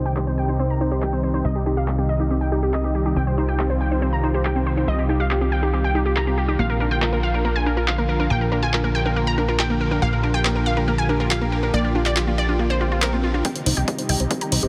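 A straight 4/4 pulse at 140 BPM drives this euphoric, soaring uplifting trance piece in C minor, with a dry, overdriven analog drum machine playing handclaps and hi-hat from 0.2 seconds. Underneath, a funky sawtooth and square-wave bass sits up front in the low register. A thick, detuned unison pad holds sustained chords with a slow attack, chorus and long release, moving from Cm to Bb. The melody comes from a bright, detuned unison pluck with a noise layer, sub octave and ring modulation through a digital delay, while a round, nasal analog pluck plays arpeggios in the background under a filter sweep. The pad, both plucks and the bass breathe with sidechain pumping over light reverb and a dense, heavily limited master. A very quiet swell and riser enters at 12.8 seconds, and at 13.4 seconds the chords return to Cm as a layered, tape-warm electronic kick with a high-pass filter starts a build-up.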